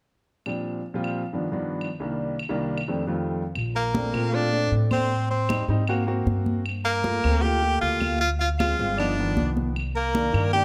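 A bright tenor saxophone carries the melody of this sunny, danceable Afro-Cuban jazz excerpt at 155 BPM in Bb major, sitting up front with vibrato and scooped notes from 3.8 seconds, while a clear soprano saxophone traces a second line in the background. An intimate grand piano with audible action noise and long sustain opens at 0.5 seconds alongside woody claves heard at a distance in a large room. At 3.6 seconds a growly pizzicato upright bass with steel strings arrives up front, with soft-handed, high-tuned congas behind it, as the chords move through rich colours such as Bbmaj7, Am7b5 and Ab9 under light reverb and close, detailed miking.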